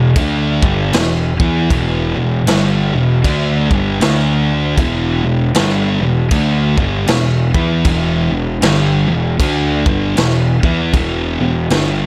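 Stoner and doom metal with a brooding, ominous swing, cut from a longer piece: a thick, dark, double-tracked fuzz guitar riff sits up front over a round, overdriven picked bass, while a raw garage drum kit with a punchy kick, medium-tuned snare, crash cymbal and a rolled-off top plays from 0.2 seconds in a small, natural-sounding room, with the harmony shifting briefly to a D power chord at 4.0 seconds.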